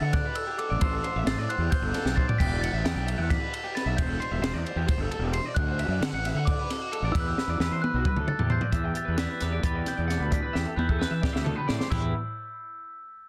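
Straight-feel 7/8 drives this intricate, restless snippet of math rock and midwest emo, where a compact cocktail drum kit with a punchy kick, high-tuned snare and dark, rolled-off top sits up front beside a round, overdriven fuzz bass, while a twangy, slightly broken-up electric guitar through a small old amp picks arpeggios in spring reverb, a mellow glockenspiel struck with rubber mallets rings out the melody through analog delay, and a clean, chorus-lush twelve-string electric guitar joins at 8.7 s as the chords move from Dadd9 through Em11 to Em7, set in a dense, heavily limited modern master.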